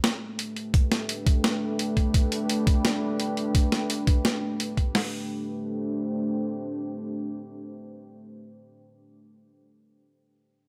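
Half-time drum and bass at 171 BPM in A minor, tuned slightly below standard pitch, this dark, spacious excerpt from a longer piece sets a deep, moody sawtooth pad with a sub octave, slow attack, chorus and sidechain pumping against two gritty, pitched-down, sampler-style boom bap kits with high-tuned snares and a thumpy kick, the drums dropping out near 5.0 s as the harmony moves from G to Am at 4.9 s and the pad sustains alone until 8.2 s in a moderate echo-chamber reverb.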